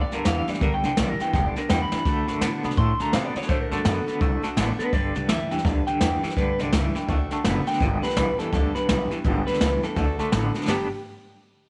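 Upbeat and rollicking, this rockabilly excerpt swings along at 167 BPM in G major, moving between G and D chords. An electric guitar through a small old amp carries the melody with a bright, slightly broken-up tone and tape echo, while a second clean, twangy electric guitar plays a low riff colored by tremolo. Underneath, a full-bodied steel-string acoustic guitar is picked in the background, and a woody, thumpy upright bass with gut strings is plucked. A jazz drum kit played with brushes sits up front, pairing a medium-tuned snare with a boomy kick, hi-hat and toms, and it throws in a drum fill at 1.9 seconds. Light reverb gives the whole a natural studio-room feel, and the passage is cut from a longer piece, ending at about 10.9 seconds.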